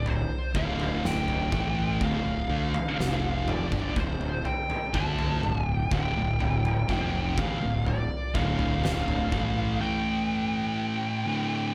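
Stoner and doom metal at a heavy, brooding 62 BPM in D minor, cut from a longer piece, where an oversized, low-tuned acoustic drum kit sits up front with a fat snare, boomy kick and toms in a pumping big room, two thick fuzz guitars grind a picked riff in the background, a growly fingered electric bass adds overdriven weight until 9.8 s, and a dark, compressed fuzz lead guitar carries the melody high above as the chord moves from D minor to A5 near the close.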